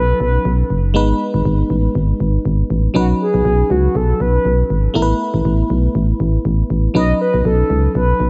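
Light reverb surrounds this brief, nostalgic and uplifting 1980s-style pop passage, cut from a longer piece, with a gently swung feel in 4/4. A mellow, horn-like synth lead with chorus, tape echo and vibrato carries the melody, while an FM electric piano with a glassy, bell-like attack and chorus supplies the accompaniment and a punchy, round FM bass sits up front beneath them, all three playing from start to finish. The harmony moves from Badd9 to G#m, back to Badd9, then on to Asus2 before returning to Badd9.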